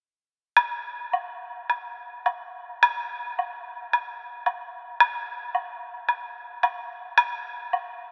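Chinese traditional in a festive, pastoral mood, this brief fragment features a lone acoustic woodblock, bright, close and up front, playing from 0.6 to 7.9 seconds in a free, rubato 4/4 around 109 BPM, its strokes ringing out into a vast cathedral reverb with a 5.3-second tail and a softened top end.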